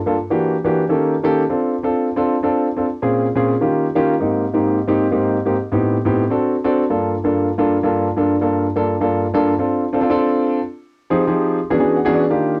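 Jazz at a brisk 178 BPM in straight 4/4, this short passage cut from a longer piece feels driving and sophisticated. A concert grand piano plays solo from 0.1 seconds, sitting up front with an intimate, natural tone, deep bass, long sustain and audible action noise, all colored by a cassette tape character. The harmony moves quickly through rich changes such as Em7b5, Eb7#11, Abmaj9 and Gm7 before a new section begins at 9.6 seconds on Dm7 and Fm7. A piano fill at 11.6 seconds plays over an E13 chord near the close of the passage. Light reverb and the home cassette recording give the performance a close, personal feel.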